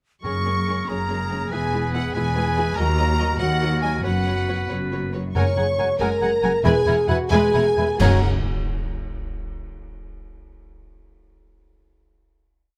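Soaring and adventurous, this brief heroic film-score cue in 6/8 sets a lush violin section on the tune, doubled in unison by a mellow, hollow flute and at the octave by a second violin line, while a clear oboe and soft-edged clarinet add chords in the rhythm of the melody, violas drive a focused ostinato, distant French horns hold dark sustained chords, rich cellos and woody double basses pulse a bass ostinato, and round timpani strokes mark the bass notes; an outro arrives at 5.4 seconds, where dark cymbal swells, crashes and bass drum join as the music slows into a final accented chord at 8.0 seconds, all captured closely in light reverb.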